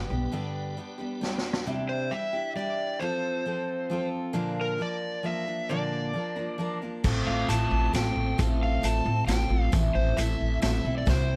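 Jangly and hopeful, this excerpt of folk rock and heartland rock moves at 134 BPM in a straight 3/4, with light reverb around a dark, warm production. A full-bodied dreadnought acoustic guitar picks the accompaniment from the start, while a piping, scooped tonewheel organ with key click, chorus vibrato and fast rotary speaker sits in the background on sustained chords. A woody, growly upright bass is heard only briefly before a break at 0.3 seconds, during which the vintage drum kit plays a short fill. From 1.9 seconds an overdriven slide guitar carries the melody, dark and up front, as the chords move from Cadd9 through F and Bb. At 7.0 seconds the bass, organ and drums return together, the kit's punchy kick, medium-tuned snare and dark cymbals joined by a jingly tambourine that sounds distant in a large room, before another drum fill near 11.1 seconds.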